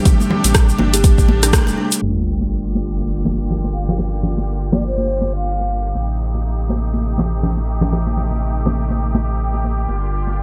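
Swung sixteenths drive this spiritual afro house excerpt, where a deep up-front electronic kick, a small-room deep house kit of hi-hat and rim click, a grainy tube shaker and a buzzing, woody kalimba with tape echo and sidechain pumping all drop away by 2 seconds, leaving ringing, dry congas beside a round sine sub bass and a rich bowed string section that both pump under sidechain, while a very quiet sub drop sounds and a breathy, hollow concert flute with tape echo enters at 3.7 seconds.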